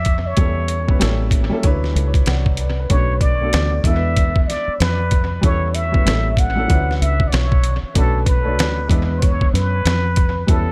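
Jazz-hop with a smoky, cool mood, this short cut from a longer hip hop piece sits at 95 BPM in 4/4 with a swung sixteenth-note feel. A trip hop sampler-style drum kit sits up front in the mix, its pitched-down, compressed sound gritty and tape-warm, with a thumpy kick, a medium-tuned snare and hi-hat. Underneath, a deep dub fingered electric bass stays low and dark, its foam-muted tone round and punchy. The trumpet with plunger mute carries the melody from the start, breathy and soft in attack, with wah-wah inflections, vibrato and a smooth top, trailed by analog delay. A woody, boxy upright piano joins at 0.4 seconds, also fed through analog delay, moving through a cycle of A9/E, A7b9, Dmaj13, Bm9 and E7 that repeats from 5.4 seconds. A small room ambience and an echo-heavy mix give the whole a smoky atmosphere.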